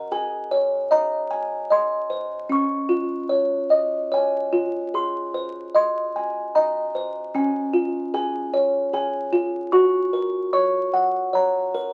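A delicate, tinkling music box plays a sleepy, tender lullaby alone in Db major at 75 BPM in a rubato 3/4, its plucked tones from a large box sitting up front in a moderate studio reverb under the crackle of a very old 78 rpm record, moving through its chords before settling on Gb at 9.7 seconds in this short excerpt cut from a longer piece.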